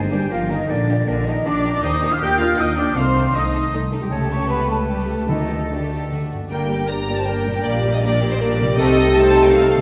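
Lush, vibrato-rich violins carry the melody in this stormy, urgent, fast romantic orchestral passage in G minor at 157 BPM in a rubato 3/4, joined by a focused second violin line, an airy flute ensemble and a bright solo clarinet, with dark violas, rich cellos, smooth double basses, ringing harp arpeggios and distant French horn chords beneath, while faint timpani strokes sound at 0.0 and 5.3 seconds and a mellow bassoon and very quiet trombones enter at 6.5 seconds, the whole orchestra set in a wet scoring-stage reverb.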